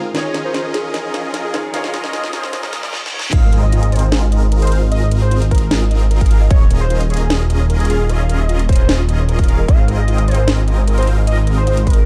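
The sound is dark and warm, set in a digital ambience, with a bright, euphoric future bass cut from a longer piece at 151 BPM in a half-time feel, in Ab major. It opens on a build-up where a velvety synth lead carries the melody over huge, phased supersaw chords, a felt-muted upright piano with tape echo and gritty sampler colour, and very quiet bowed strings with vibrato and portamento. A trap kit with a sharp snare and metallic hats plays fills as a riser, a filter sweep and a reverse cymbal push toward the drop. At 3.3 seconds the drop lands with an impact, a punchy, up-front electronic kick and a thick, saturated detuned saw bass, both prominent in the mix; the strings have already stopped, and the piano drops out a moment later. A soft, round pluck plays background arpeggios with chorus and tape echo, while sidechain pumping makes the lead, chords, bass and pluck breathe. The harmony alternates between Eb9sus4 and Ab69.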